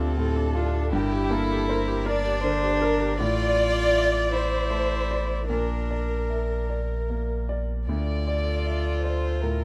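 A rubato 6/8 lilt at 52 BPM carries this fragile, reflective neoclassical fragment in D minor, where an intimate chamber violin section sings the melody with vibrato and sul tasto softness over a distant, floating solo cello line, while a pure-toned viola and a smooth, vintage concert grand piano fill out the accompaniment and a punchy, up-front sine sub bass with a pitch-drop attack anchors the low end through chords moving from Dm to Gm, Bb and back, heard in a rough home-demo mix with small-room ambience.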